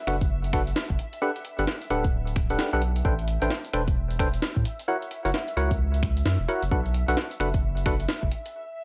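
A hollow, percussive organ stab with tape-worn chorus and delay sits up front in this soulful, late-night two-step UK garage passage at 131 BPM, over a thick, saturated sub bass that pumps alongside a punchy layered kick, while a gritty, pitched-up sampler kit of finger snaps, hi-hat and high-tuned snare swings over an ethereal, phased pad drifting through Bm7, Gmaj9, Am11 and F#7 in the background before a break at 8.5 seconds.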